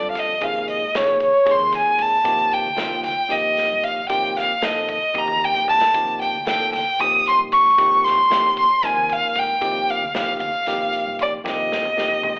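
Filtered to a telephone-like tone and bathed in a large studio reverb, this short cut of funky, bright electric jazz fusion in 7/8 has a band playing together in one room, with a smooth, vibrato-rich bowed violin up front carrying the melody over bell-like electric piano chords, while a dark, round hollow-body fingered bass and an acoustic drum kit with a tight kick sit in the background, the drums adding fills at 5.2 and 11.5 seconds.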